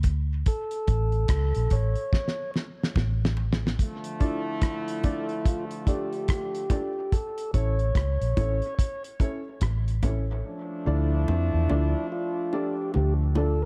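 A deep, spacious dub reggae excerpt in D harmonic minor at a slow 72 BPM with swung sixteenths opens on a break. A foam-muted, dark vintage bass and a cloth-damped, thuddy drum kit with a fat snare, tight kick and rolled-off top sit up front, while low-tuned, filtered bongos with dub echo hover in the background and a clean tonewheel organ with key click, a stopped rotary speaker and dub echo carries the melody. A brilliant, close-miked trombone section joins as a second line at 3.8 seconds and a woody, slightly detuned upright piano with audible action noise adds filtered, echoing stabs from 4.2 seconds, all in a dark, warm small room, with the drums dropping out at 10.3 seconds.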